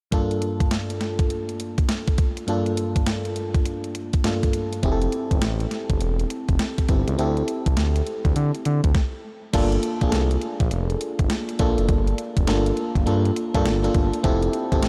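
A glassy, bell-like FM electric piano with a chorused warble and a crisp, overdriven 8-bit drum machine with a thumpy kick and medium-tuned snare open this punchy, slick new jack swing excerpt in G dorian at 102 BPM with a swung 16th feel, a smooth sawtooth-and-triangle synth bass joins at 4.8 s over chords moving from Gm9 to Fmaj9 and D7sus4, and after a brief stop at 8.9 s the groove returns at 9.5 s, all bathed in a dreamy cathedral reverb.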